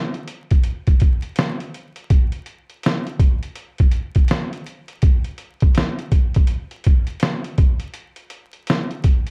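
Reflective and melancholic, this hip hop fragment moves at 82 BPM in 4/4, with a 62% swing on the sixteenths. The only part is a trip hop sampler-style drum kit of hi-hat, kick and snare, which enters at 0.1 seconds and plays through to 9.3 seconds. Its sound is compressed, pitched down and gritty, with a thumpy kick and a medium-tuned snare, and it sits up front as though re-recorded in a large room. The overall production is dark and warm, touched by light reverb and a bed of vinyl crackle. A short opening passage gives way at 2.1 seconds to a second section, which carries on until the cut.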